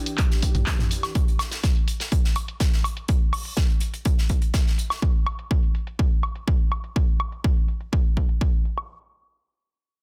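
Acid house with a trippy, raw mood, this short cut opens on a detuned, warbling sawtooth pad holding an Em7 chord for barely a second while a dry, punchy electronic kick up front drives the groove alongside an analog drum machine of filtered handclaps, hi-hat, toms and woodblock under a filter sweep, an airy acoustic kit of hi-hat and snare played with bundle sticks until 5.0 s, and a brief round sine sub bass note pumping at 0.5 s, all in a dense, heavily limited master.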